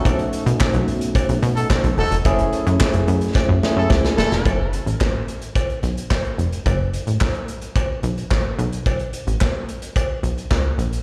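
Funky and slick, this early-eighties boogie funk fragment at 109 BPM in F# dorian rides a punchy, filter-plucked analog bass and an up-front studio kit of kick, medium-tuned snare, hi-hat and handclaps alongside a metallic cowbell, while a barky, bright tine electric piano with subtle chorus and slapback echo moves from B9 to F#m9 and a smooth pop-style horn section with light vibrato and tape echo joins at 1.6 seconds, both stopping at 4.5 seconds after a drum fill as the groove settles on F#m, the whole performance heard as a live gig through the venue's PA with a recital-hall ambience.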